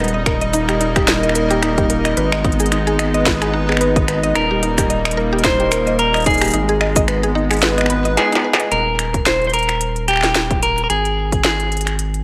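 Wistful and playful, this IDM excerpt moves at 110 BPM in Eb major with a swung 16th feel. A hollow, flute-like pad holds chorused chords with a gritty sampler edge, while a woody, mallet-like FM pluck plays tape-echoed arpeggios over Eb and Ab minor harmony, and a very quiet texture of resonant, randomly stepping filters bubbles beneath. A round, deep analog bass and a heavy electronic kick sit with an up-front industrial kit of clanging snare, crisp hats, cabasa and finger snaps, both drum parts tape-warm and re-recorded in a large room. A dark, clean electric guitar melody with delay enters at 4.4 s, and after a drum fill at 8.2 s the pad, pluck and texture stop, leaving bass, drums and guitar in plate-reverb ambience until the chords fall away at 10.9 s.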